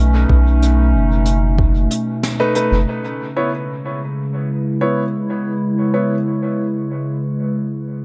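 Heard through light reverb and a small-room ambience, this echo-heavy mix of ambient dub drifts along at 93 BPM in a straight 4/4, its mood peaceful and spacious, and it is cut from a longer piece. A warbling, nostalgic pad with a lo-fi, detuned character and vintage 12-bit sampler grit holds sustained chords from B2 to B4 throughout, its chorus and built-in reverb sitting up front, moving from B7 to C#m7 at 2.9 seconds. Underneath, a deep, round dub sub bass plays between F#1 and B1 until 2.9 seconds, joined briefly by a soft electronic kick and a brushed acoustic kit of hi-hat and medium-tuned snare, the brushes trailing dub echo. The band hits an accent between 2.2 and 2.6 seconds. From 2.4 seconds an intimate, woody upright piano adds stabs from A3 to C#5, its audible action noise and dub echo giving it a natural, close presence before it stops at 6.1 seconds and the pad carries on alone.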